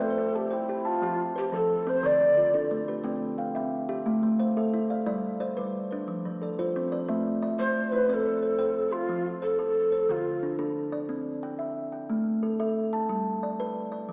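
A rippling, hypnotic southern African traditional piece in C major at 119 BPM in a straight 12/8, heard in a reverberant church-like hall with a small-speaker sound, where two woody, ringing kalimbas weave thumb-plucked arpeggios (a hollow-box one up front through 14.1 s, a dark solid-board one until 8.4 s) beneath a mellow, airy, low wooden flute whose chiffy, vibrato-laden phrases surface at 0.0 and again at 7.6 s.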